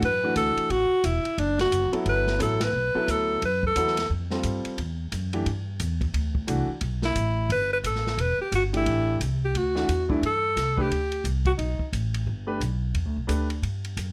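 Warm and playful, this excerpt of small-group swing and bop moves at a brisk 176 BPM in 4/4 in G major, with a loose swing on the eighth notes. A clear alto saxophone carries the melody up front, its jazz-style tone shaded with vibrato, subtone and scooped notes, stating a phrase until 4.1 seconds and returning from 7.1 to 11.9 seconds. A concert grand piano with deep bass and a natural sound comps beneath it, while a woody, pizzicato upright bass on steel strings sits up front and runs through the whole clip. The open jazz drum kit sounds dark and smooth in a small room, with dark cymbals on ride and hi-hat, a medium-tuned snare, a boomy kick and a rolled-off top. The band hits a shared accent at 2.6 seconds, and the harmony wanders through colorful extended chords such as Gmaj9, D13 and B7b13 before settling on a rootless Em11, all wrapped in light reverb.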